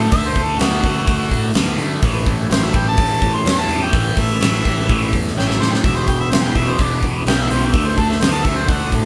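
A distant, roomy harmonica with light vibrato carries the melody through this swaggering, driving blues rock and southern rock power-trio excerpt, over a bright, double-tracked overdriven guitar riff with phaser, a round fuzz bass, and a huge arena drum kit with a fat snare and punchy kick that plays a fill at 5.4 s, while a gritty, very quiet tonewheel organ enters at 2.0 s with sustained chords through a rotary speaker, the band heard playing live together in one large studio room.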